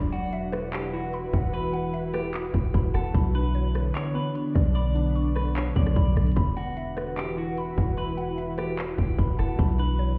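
A half-time trap groove at 149 BPM in 4/4 drives this melancholic, spacious stretch of atmospheric cloud-rap, cut from a longer piece. Up front, an electronic drum kit sets hard-clipped kicks against metallic hi-hats, handclaps and rim clicks, alongside a deep, boomy 808-style bass whose sine tone carries a noise layer and decays after each fast attack. Above them, an ethereal, airy pad of detuned unison saw and triangle voices holds slow-blooming chords through ensemble chorus, built-in reverb and sidechain pumping, moving between Esus2 and Bmadd9. A woody, round FM pluck with a mallet-like, percussive edge spins arpeggios through chorus, phaser and digital delay, while a clean, picked electric guitar enters at 0.1 seconds with a warm melody trailed by its own digital delay. The whole mix sounds muffled, as if heard through a wall, with a stone-room reverb coloring the overall sound.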